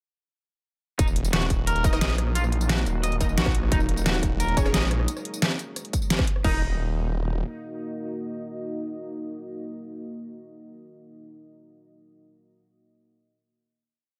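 A dry, close-sounding dark technical drum and bass piece at 176 BPM in Eb minor, with a futuristic menace: from 1.0 s a punchy overdriven electronic kick and a tight, up-front dubstep kit of deep snare, rim, closed hat, tambourine and crash drive the drop beneath a snarling, growling detuned saw bass playing chopped phrases. Above them, a twangy, slightly broken-up electric guitar repeats a 16-step arpeggio through dub echo and sidechain pumping, while a deep, moody pad with chorus and reverb swells in on sustained chords and a bold, orchestra-hit-like synth stab sounds sparse, echoing power chords in the background. The harmony moves from Ebm to Dbsus2/Eb and back, and the drums fall away around 6.5 s as the pad and stabs hold a final Ebm chord.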